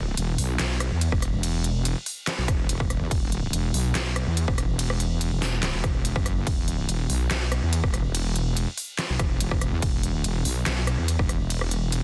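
Aggressive and menacing, this heavy wobble dubstep excerpt moves at 143 BPM in a half-time 4/4 feel, tuned slightly flat to A4 = 439 Hz. A heavy, saturated wobble bass with detuned sawtooth and sine layers, chorus and overdrive sits up front from the very start, ranging from E1 to E2, while a layered electronic drum kit enters at 0.2 seconds with a deep, soft-clipped snare, crisp hi-hats, handclaps, ride cymbal and rim clicks. A punchy, tape-tinged electronic kick joins at 1.1 seconds, all within a dry, dense and heavily limited modern master.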